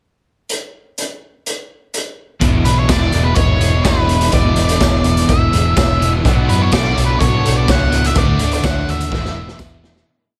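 A short, complete shoegaze and dream pop rock piece with light reverb and lossy compression artefacts, it feels blissful and wistful, moving at 126 BPM in a straight 4/4 in E mixolydian. A gritty, saturated garage drum kit opens alone at 0.5 seconds with a pickup bar, its punchy kick and medium-tuned snare sitting up front in a small, pumping room with a rolled-off top. At 2.4 seconds the bass and guitars arrive over E7, Bm11 and D chords. A dark, round, foam-muted electric bass drives eighth notes under a thick fuzz guitar strumming very quiet chords with whammy-bar dips, a crunchy double-tracked overdriven guitar ringing chords, and a biting overdriven guitar making volume swells in the background, washed in reverse reverb. A clean, compressed twelve-string electric guitar adds very quiet picked arpeggios. At 2.6 seconds an octave-fuzz lead guitar with distortion and analog delay enters, singing a motif-based melody in sentence phrases, and from 2.9 seconds a jingly tambourine pattern sits in the background. 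The piece fades out from 8.2 seconds, with a drum fill and a return to E7 closing it.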